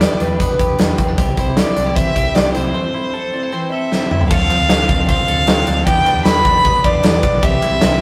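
A close, intimate violin carries the melody up front with vibrato, a soft attack and an airy sul tasto bow, over breezy, youthful jangly indie pop built on a big rock drum kit with a punchy kick and bright cymbals, a bright, twangy twelve-string electric guitar playing arpeggios, and a full-bodied picked steel-string acoustic guitar and round, dark, foam-muted bass sitting in the background. A break arrives at 2.7 seconds, capped by a drum fill at 3.9 seconds, and a very quiet, hollow group handclap joins at 4.5 seconds. This fragment of a longer piece has a rough rehearsal-room sound with tube saturation and a moderate stone-room reverb.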